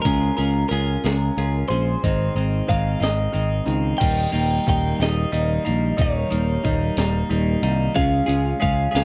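A clean, twangy twelve-string electric guitar carries the melody over an overdriven, double-tracked semi-hollow guitar riff with a cassette-tape tint, joined at 0.1 s by an up-front picked electric bass and a gritty, pitched-up breakbeat sampler-style drum kit with a thumpy kick, medium-tuned snare, hi-hat and crash, giving this carefree, jangly indie rock fragment in 6/8 a dry, home-cassette sound as the chords move from Db6 and Ab to Eb7 and Db.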